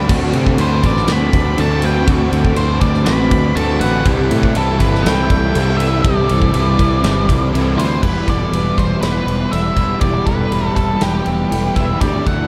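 Shoegaze-leaning dream pop rock at 121 BPM, hazy and dreamy, this short cut from a longer piece is soaked in lush hall reverb, with an up-front big rock drum kit of bright cymbals and punchy kick alongside a growling, overdriven fingered bass. Behind them sit a crunchy overdriven guitar riff with ensemble chorus, a dark semi-hollow guitar riff with reverse reverb, and lo-fi arpeggios from a guitar through a small old amp with lush chorus and diffuse delay, while a dark octave-fuzz lead carries the melody from 0.6 s. A very quiet, silky, warbling string machine holds sustained chords over D7 and C69 until 8.0 s, when the harmony settles onto Em.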